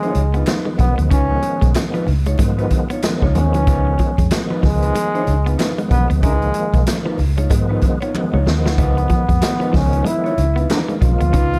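Set in a small room ambience, this gritty, playful funk excerpt swings on the sixteenths, with a punchy, up-front big-band drum kit and a round, foam-muted vintage fingered bass that enters at 0.2 seconds. A distant, roomy trombone carries the vibrato-laden melody over a mellow, dark electric guitar accompaniment, a compressed clean guitar riff with tremolo sitting in the background, and reedy tonewheel organ stabs colored by chorus vibrato, fast rotary speaker and analog delay. Very quiet congas with soft hands and a crisp group handclap add texture, and the drums break into a fill from 8.1 to 8.8 seconds.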